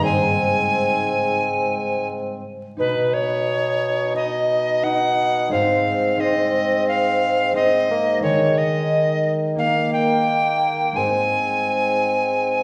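Heard through the reverb of a recital hall with vinyl crackle, this courtly, festive excerpt of a renaissance-style consort dance moves at a straight 88 BPM in 4/4 in Ab major. An airy, woody alto recorder carries the melody up front with vibrato, a soft, chiffy attack and a bright tone, while a fingerpicked concert harp rings beneath it. Two mellow bassoons round out the consort, one adding smooth-topped accompaniment with light vibrato and the other holding a distant, roomy bass line, as the harmony moves to B at 2.8 seconds and then through Ebsus4 and Eb back home to Ab.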